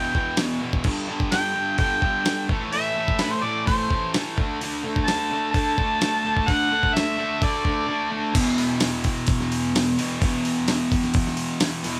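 The sound is raw and gritty, like a small garage band playing live in one room with a light touch of reverb, in a short excerpt cut from a longer piece. A fuzz guitar sits up front with a bright, double-tracked, compressed tone, picking a distorted riff that runs throughout. The sampler-style drum kit is dusty and compressed, with a thumpy kick, a fat snare, hi-hat and crash cymbal, and it enters just after the guitar. Over a straight beat in four, a mellow harmonica carries the solo melody with vibrato, scooped notes and a punchy, vintage, overdriven edge until 8.1 seconds. After a brief break, the guitar and drums carry a new section through to the end at 12.0 seconds.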